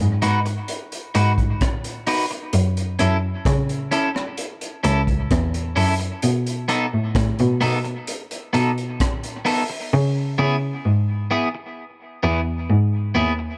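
A clear, bowed cello carries the bass line up front, one player with smooth vibrato anchoring this hypnotic, heavy dub reggae excerpt in C# minor at a slow 65 BPM. A crunchy, gritty breakbeat kit with a punchy kick, hi-hat and rim click sits low and dark in a small room before dropping out at 9.7 s, while a picked electric guitar, compressed and slightly broken-up, enters at 0.2 s, bathed in lush chorus and dub echo. The harmony moves from G#m7 through F#m7 and B7 to C#m7, all under a light studio reverb.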